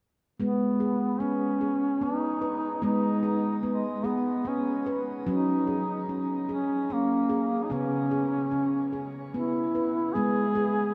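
A mellow solo duduk sings a folk-style melody with vibrato, soft attacks and scooped notes through shimmer reverb and tape echo, while a ringing nitrided-steel handpan, played with the fingertips and bathed in its own shimmer reverb, spins arpeggios beside it from 0.4 to 10.9 seconds in this gentle, meditative world piece for tuned percussion at 74 BPM in 3/4 and G# minor, moving through G#m, F# and C#m before returning to G#m inside a dreamy cathedral reverb, all in this short passage cut from a longer piece.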